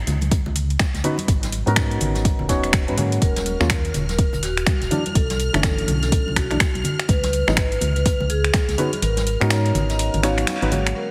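Heavily compressed and radio-like with a light reverb, this moody, hypnotic deep house excerpt moves at 124 BPM with a swung feel over chords including Abm11 and Ebm11. A deep, tape-warm electronic kick (which drops out at 9.0 seconds) anchors a layered house kit of finger snaps and metallic hats, a very quiet brushed jazz kit, and hard-hand congas in the background, while a hollow, dark FM bass and a chorused, organ-like stab both pump against the sidechain. From 3.2 seconds a ringing vibraphone carries the melody through sampler grit and delay, over a shimmering, vintage string-machine haze, before a band accent at 10.5 seconds.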